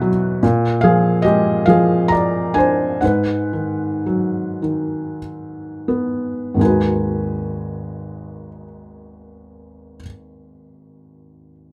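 A close, detailed and nearly dry recording puts a felt-muted upright piano up front, its soft, mellow tone warm and intimate behind thin felt, with audible action noise. This reflective, wistful classical fragment, cut from a longer piece, moves in a rubato 6/8 in G# minor at roughly 27-50 BPM, slowing from 0.4 to 6.6 seconds as an A#7 chord gives way to G#m7 at 3.0 seconds. The solo piano spans G#1 to A#5, shifting into a new section at 6.6 seconds before falling silent at 11.7 seconds.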